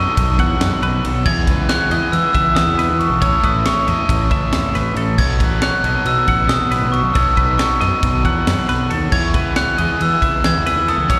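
Driving along at 274 BPM counted in eighths in a straight 9/8, this short cut from a longer math rock and midwest emo piece in E major feels wistful and playful, cycling through chords like B9sus4, E6 and Aadd9. A bell-like glockenspiel struck with soft plastic mallets carries the ringing melody over twangy, compressed twelve-string arpeggios and a double-tracked, crunchy overdriven guitar riff, all three touched with slapback echo, while a round, fuzzed fingered bass sits up front and an airy fusion kit with a high-tuned snare and punchy kick joins at 0.2 seconds. The whole band sounds like a live gig heard through the venue's PA, wrapped in small room and recital hall reverb.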